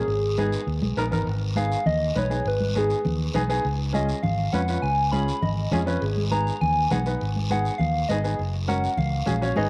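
Danceable and passionate, this cumbia cut from a longer piece moves at a brisk 202 BPM in G# dorian, riding a chord cycle of G#m, C#, G#m and F#. A soft struck synth lead carries the melody with a round, keys-like FM tone that has a fast attack and then decays, colored by chorus and vibrato, while a clear upright piano supplies woody, long-sustaining accompaniment beneath it. A punchy, amped fingered electric bass sits up front and anchors the low end, joined by raspy guiro and bright, thin-skinned congas played with soft hands in the background. A drum fill arrives at 0.8 seconds, and a dark, compressed electric guitar adds a brief tremolo-treated second line from 5.4 to 6.2 seconds. The home cassette recording gives the lead, piano and guitar a tape character, and moderate spring reverb surrounds the ensemble.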